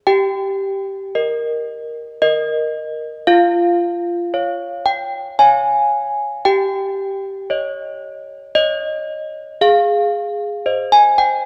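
Classical tune for handbells, festive yet serene, moving at a slow 57 BPM in 3/4 and cut from a longer piece. Desk bells play alone throughout, spanning F4 to Ab5 with a clear, ringing, slightly clanky tone that sits up front, a touch out of tune and carrying a boxy small-room character. The chords pass from Eb/G through Db/F and Eb7/G to settle on Ab at 9.6 seconds, framed by a dark production and a moderate concert hall reverb.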